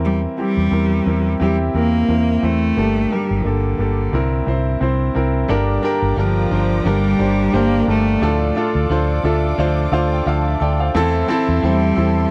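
Pop with a driving, bittersweet mood and a lightly swung sixteenth-note feel, cut from a longer piece in a dry, close studio sound with a 1970s character. A clear, up-front grand piano and a dark, foam-muted fingered electric bass with a round, punchy tone support a bowed solo cello melody, focused and played with vibrato. At 5.5 seconds a lush string section enters with sustained chords in the background, alongside a bright, twangy clean electric guitar riff, while the piano adds a fill from 8.9 seconds.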